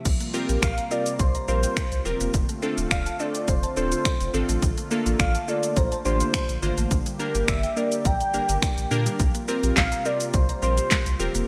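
Confident yet bittersweet, this dance-pop excerpt rides a punchy, up-front house drum kit of kick, snare, bright hi-hats, shaker, handclaps, finger snaps and crash, over a deep, round sine sub bass that pumps with sidechain alongside a soft, detuned sawtooth pad in the background. A woody FM mallet-like pluck spins delayed arpeggios and glassy digital keys add filter-swept accompaniment, both chorused and pumping, while a velvety, detuned sawtooth lead with chorus, delay, vibrato and portamento carries the melody from 0.6 s. The bright 1980s-style digital production sits in a lush hall reverb as the chords move through C7sus4, F6, Bbmaj7 and Gm.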